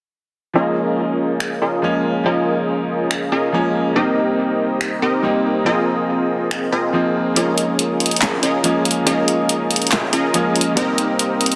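A punchy, detuned supersaw stab with a sub octave carries the riff through a low-pass filter sweep and dub echo from 0.6 s in this bright, playful future bass excerpt at 141 BPM in a half-time feel in Db lydian, over brilliant baby grand piano chords moving through Db69, Cm7 and Ab69, while a layered pop drum kit of finger snaps, handclaps and hi-hat enters at 1.4 s with a softly clipped snare, all set in a lush hall reverb and a dense, heavily limited modern master.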